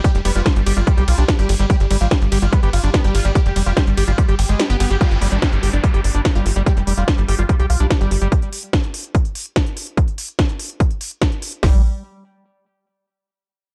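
A heavy-kicked, up-front techno drum kit with a cracking snare and smooth hats, layered with a second kit adding ride cymbal, drives this intense, alien psychedelic trance fragment alongside a tight, saturated sequencer bass, a squelchy, distorted acid bass riff, punchy detuned supersaw stabs treated with phaser, sidechain pumping and delay, and a metallic FM wobble bass in the background, while a background downlifter arrives at 5.0 s just after the kick drops out at 4.6 s, and the melodic parts fall away at 8.3 s in a dark, dry production.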